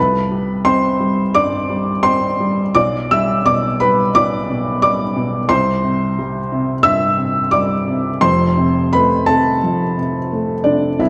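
Hopeful and intimate, this short neoclassical minimalist piano piece in C major moves at a rubato 87 BPM in 4/4, cut from a longer work. A felt-muted upright piano plays alone throughout the 11.1 seconds, its soft, mellow, boxy tone sitting up front with audible action noise, spanning F1 to E6 across a progression of Csus2, G/B, Csus2 and F. A moderate scoring stage reverb with a 1.8 s decay surrounds the instrument.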